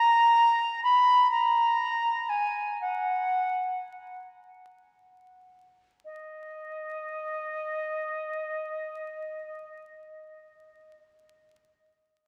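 A silver concert flute carries this meditative, yearning classical fragment entirely on its own, its pure, metallic tone held straight with a crisp attack. Cut from a longer piece in E-flat minor, it moves freely in 4/4 with an expressive rubato, the pulse drifting between 33 and 67 BPM and slowing through the opening 6.1 seconds. From there a second passage carries the line on until the flute stops at 11.0 seconds, staying between Eb5 and Cb6. The instrument sits in a wet church acoustic with a long 3.8-second decay, heard from further back in the room. A vinyl crackle lends the recording an aged, intimate surface.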